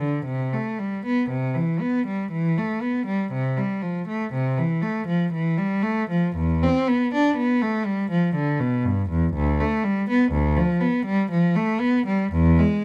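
A single bowed cello carries this classical, baroque-style suite movement alone, its rich tone placed up front and colored by vibrato. The mood is introspective and solemn, with the line moving in a slow three-beat metre that bends freely under a rubato feel. The playing sounds smooth and even, ranging from D2 up to D4 across the 12.8 seconds of this fragment cut from a longer piece. Close, detailed microphones capture the instrument intimately, while a light reverb adds a touch of space around it.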